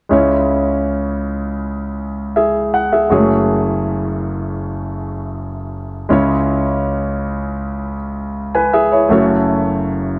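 Pop excerpt in C# minor at 80 BPM with a heartbroken, emotional mood, where a clear, polished concert grand piano sits up front with deep bass and short sustain, moving through C#m and F#madd9 chords in a dark production touched by light reverb.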